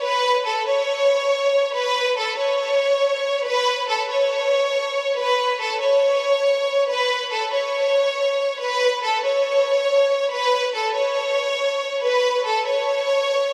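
A rich, smooth violin section plays alone with vibrato from the start to 13.5 s in this menacing, cold hip hop fragment at 140 BPM in a half-time 4/4 feel, sitting up front yet sounding distant through tape echo and a huge ambient reverb with a 4.0-second decay that soaks the dreamy mix.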